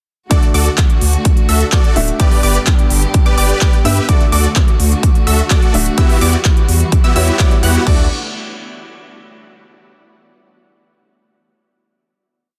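Anthemic and triumphant, this short festival progressive house piece is one full-throttle drop that resolves onto a final chord at 7.9 seconds. Huge, bright detuned supersaw chords carry the rhythmic chord riff with a tape-worn edge and delay, while a punchy unison pluck doubles them an octave higher in the background. A punchy, up-front electronic kick drives a four-on-the-floor pulse, and a big-room drum kit adds crisp programmed hi-hats, a handclap backbeat and crash cymbals, both re-recorded in a large room. A deep, saturated sub bass enters at 0.5 seconds with an off-beat line, and sidechain pumping makes the bass, chords, pluck, piano and strings breathe around the kick. Lower in the mix, a clear, slightly boxy baby grand piano with delay plays held chords with syncopated pushes, and a rich, smooth studio string section with vibrato sustains a bowed pad. The dry, dense and heavily limited master keeps the sound loud and forceful.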